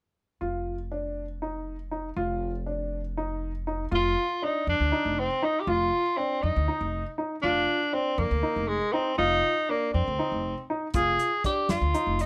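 A driving, brooding progressive instrumental excerpt in 7/8 at 239 BPM counted in eighths, where an intimate grand piano with audible action noise plays arpeggios over a woody, thumpy pizzicato upright bass on a Dm/F chord, a clear tenor saxophone with light vibrato and scooped notes takes the jazz-style solo melody from 4.0 seconds, and a dry, dark soul drum kit with a fat snare and tight kick joins at 10.9 seconds, all under light reverb.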